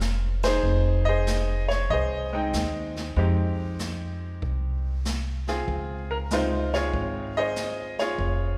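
Heard in the roomy, resonant ambience of a concert hall, this short cut from a longer piece is a smoky, swinging jazz piano trio in F minor at 96 BPM. A woody, up-front upright bass with steel strings and a brushed drum kit with dark cymbals, a medium-tuned snare and a boomy kick start together, and a bright, brilliant upright piano takes the melody from 0.4 s, just as the band hits an accent. The harmony moves from a rootless Bb7 to Fm7 and settles on Dbmaj7 at 5.7 s.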